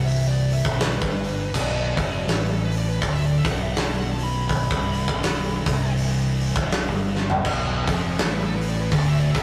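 A compressed fuzz lead guitar leads this heavy, brooding stoner and doom metal excerpt, soloing over two thick fuzz guitars churning out a low riff over a B minor chord, one dark and very quiet, the other sitting in the background with added distortion. A growling, fingered electric bass sits beneath them, bright and overdriven with a direct, amped edge. A big rock drum kit enters at 0.1 seconds and sits up front, its punchy kick, medium-tuned snare, toms, hi-hat and crash sounding mid-forward in a big room with a rolled-off top. The pace is a slow 81 BPM in 4/4 with a loose swing on the eighth notes, and a drum fill arrives at 7.1 seconds. At 7.4 seconds a bright, double-tracked overdriven guitar joins the riff from the background. The whole take has the rough feel of a rehearsal-room recording, with saturated grit and light reverb.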